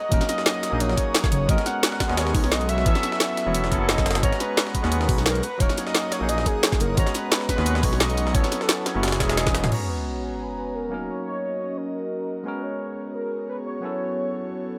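Liquid drum and bass at 175 BPM in G# minor, melancholic and lush, where a velvety synth lead with chorus and delay sings over a breathy, pumping pad and a barky tine electric piano, while a menacing detuned saw bass, an overdriven kit with woody snare and bright hats, a knocking kick and a gritty, pitched-up jungle break in the background drive the drop until a fill at 9.4 seconds gives way to a sub drop impact at 9.7 seconds, leaving the keys, pad and lead to carry on with little reverb.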